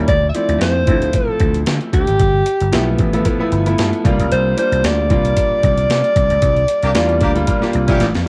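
A breathy alto saxophone carries the melody in this short excerpt of polished 1980s jazz-funk pop, its mellow subtone and vibrato sitting up front yet with a distant, roomy character and a touch of cassette tape coloring. Underneath, a growly, punchy electric slap bass and a gritty, overdriven, sampler-style breakbeat kit with a thumpy kick and medium-tuned snare give a swung sixteenth-note feel in 4/4. A bright baby grand piano comps with an intimate tone, audible action noise and analog chorus, adding a fill around 3.3 seconds over chords moving from Dm7 to G13 to C9sus4. Near the end a clear, tight horn section enters in the background at 6.8 seconds with light vibrato and tape echo, joining a band accent before a drum fill at 8.0 seconds. The mood is slick and urban, framed by light reverb and the small-room ambience of a home cassette recording.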